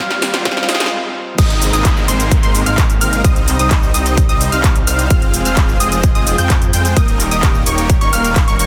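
A punchy, up-front electronic kick drives this anthemic, triumphant festival progressive house cut: a breathy flute-like lead with vibrato, a boxy baby grand piano in the background, a riser and downlifter, huge, bright supersaw chords, thick saturated detuned saw bass and a warbling vintage pad open a short build-up with a drum fill that halts at 0.9 s. The drop then lands at 1.4 s with a decaying unison pluck arpeggio with a filter sweep and tape echo joining the supersaw chords, bass and pad, set over a big-room kit of snare, metallic hats, handclaps, shaker and crash.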